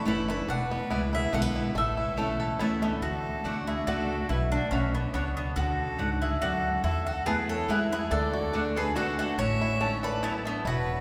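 Joyful and virtuosic, this bluegrass passage in A major moves at 142 BPM in a straight 3/4, cut from a longer piece. A bright, woody mandolin carries the melody up front, while a second, softer mandolin sits in the background with warm stabs, and a clear, intense fiddle bowed by one player with light vibrato adds a second line. A picked steel-string acoustic guitar with a bright concert sound provides accompaniment, and a pizzicato upright bass with a woody tone sits up front on the low end. A twangy, percussive banjo played with fingerpicks plays arpeggios at the opening, drops out at 3.0 seconds and returns at 8.1 seconds. The harmony moves from E7 to A, then through D, Bmadd9, Esus4 and E before settling back on A. Recorded in a church or concert hall, the ensemble rings in a wet cathedral reverb that gives the quick picking a spacious, glowing halo.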